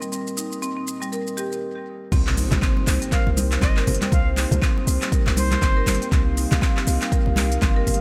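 Afro house at 120 BPM in C minor, this warm, hypnotic excerpt from a longer piece swings its 16ths over a Cm7 harmony. A dark, detuned analog pad holds sustained chords with chorus and sidechain pumping, while a woody marimba on rosewood bars plays bright arpeggios through dub echo, and a deep house kit supplies smooth hats, shaker, handclaps and crash cymbal. After a short break, the drop lands at 2.1 s with a deep, layered electronic kick, a boomy 808-style bass with a sine tone and noise layer pumping underneath, soft-handed congas sitting in the background through analog delay, and a background electronic impact. A breathy jazz flute, close-miked with vibrato and tongued notes, carries the melody from 3.1 s to 6.1 s, its phrases trailing into dub echo. The mix is echo-heavy with light reverb, keeping the groove deep and spacious.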